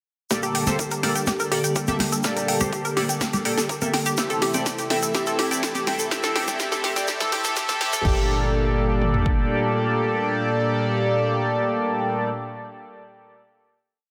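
Glossy, retro chorused polysynth stabs in dotted-rhythm chords sit up front in this emotional, expansive progressive house piece, over a smooth detuned analog pad, a round, bright analog pluck running a 12-step sequence that drifts against the bar under a filter sweep, a tight sequencer bass, an overdriven deep house kit with a four-on-the-floor kick, toms, punchy snare, metallic hats and crash, a grainy egg shaker and tribal congas, all building with a drum fill until 8.0 seconds before the pad and polysynth hold a final Gmadd9 chord, with the bass, kick and toms carrying on briefly beneath them, in a lush hall reverb to 12.3 seconds.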